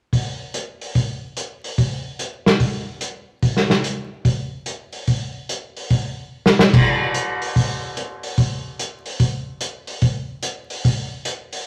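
Dramatic and brassy in mood, this jazz excerpt swings at 146 BPM in 4/4, with a triplet lilt on the eighth notes. A vintage acoustic drum kit carries the whole piece from 0.1 to 11.6 seconds, sitting up front with crash cymbal, hi-hat, kick drum and snare drum. The kit has a small, pumping room character, with dark cymbals, a medium-tuned snare, a punchy kick and a rolled-off top that keeps its tone warm. A drum fill from 6.3 to 6.7 seconds bridges the opening section into the next, which runs until the fragment cuts off. The recording sits in a moderately large studio reverb, and a layer of vinyl crackle lends it an aged patina.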